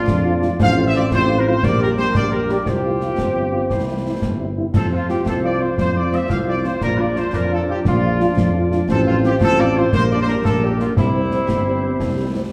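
Rousing and festive, this military-style wind band march in 6/8 sets a vibrato-tinged trumpet section on the melody over a warm woodwind second line, clear sustained trombone chords, shadowy French horns and a dark, close-miked tuba bass, with concert snare, bass drum and bright clash cymbals, all heard from further back in a large, reverberant studio space.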